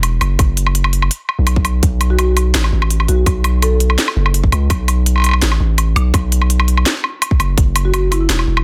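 A half-time groove at 167 BPM in 4/4 drives this dark, cinematic drum and bass excerpt in F# minor, cut from a longer piece. The drum kit runs throughout, its cracking snare, crisp hi-hats and woodblock sitting up front with a tape-tinged, layered electronic character and small room ambience, while a tight electronic kick joins at 0.4 s. Beneath them a long, sustained 808-style bass, deep and sine-like with a fast attack and decaying tail, holds the low end between E1 and C#2. A marimba struck with medium mallets carries the melody between E4 and A4, its woody padauk tone smooth and shadowy under a delay, appearing from 2.1 s and returning briefly at 7.8 s. The harmony rests on an F#5 power chord, drops away to an unharmonized stretch, then returns to F#5, all wrapped in digital ambience and a dense, heavily limited modern master.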